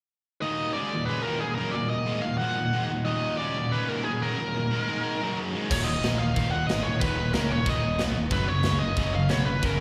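Heavy metal at 182 BPM in Eb minor, dark and heavy, where an up-front, warm high-gain lead guitar carries the melody over two bright, picked rhythm guitars riffing in the background and a very quiet, shimmering pipe organ celeste holding soft chords until 5.7 seconds, when a growly, punchy picked bass and a tight, mid-forward drum kit with bright china and crash cymbals come in, all bathed in a wet church reverb as this cut from a longer piece ends at 9.8 seconds.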